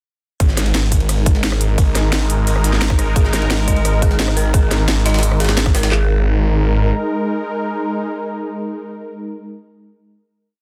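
Tight, layered broken-beat drums drive this dark, mechanical technical drum and bass piece at 174 BPM: an up-front kit of kick, woody snare and handclaps sits over a second kit of cracking snare, rim clicks and crisp hats, and a gritty, pitched-up jungle sampler break of ride and high-tuned snare loops in the background, beneath a snarling, distorted, growling saw bass in chopped phrases, a sweeping, airy resonant pad whose sidechain-pumped chords carry the final chord to 9.4 seconds, and an eerie FM synth bell with 12-bit grit and digital delay that repeats an 8-step arpeggio from 3.2 seconds.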